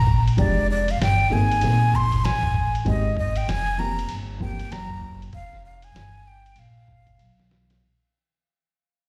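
Heard through a club PA with light reverb, this cool, smoky jazz-hop excerpt at 97 BPM in F dorian swings as it fades out, with a breathy, close-miked flute carrying the melody through slapback and tape echo over a woody, pizzicato gut-string upright bass up front, a muffled, compressed sampler-style kit with a fat snare, and a dark, slightly detuned upright piano with audible action noise that accompanies from 0.4 to 4.8 seconds before a break at 5.3 seconds and a drum fill at 7.2 seconds.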